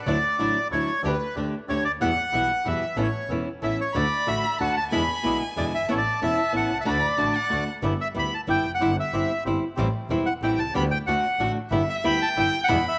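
Heard through a moderate echo-chamber reverb, this playful, elegant tango fragment at 186 BPM in a rubato 3/4 moves from D major to G major at 7.8 s, with a reedy, bright bandoneon carrying the melody up front, a fingerpicked acoustic flamenco guitar with audible finger squeak supplying accompaniment up front, a second, darker bandoneon adding smooth stabs in the background, a clear bowed double bass giving a nasal, biting bass line with vibrato and an airy bow, and a warm violin drawing an expressive second line with portamento in intermittent passages, briefly at the very start, then from 3.9 to 7.7 s and again from 11.7 s.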